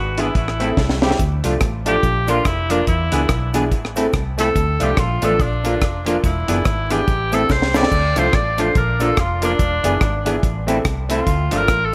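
Ska in D minor at 143 BPM with a swung, energetic and mischievous feel, this short cut from a longer piece puts a clear, up-front tenor saxophone solo with scooped notes and a dub echo over the whole 11.9 seconds, while a round, foam-muted fingered electric bass holds the low end. A bright, clean semi-hollow guitar soaked in spring reverb and dub echo, woody, boxy upright piano stabs, and a dry, dark reggae drum kit with a high-tuned snare, tight kick and rim clicks drive the chords cycling through Am, Dm, Bb and E7, with drum fills at 0.8 and 7.5 seconds. A grainy cabasa joins very quietly at 1.2 seconds, and vinyl crackle sits under the moderate studio reverb.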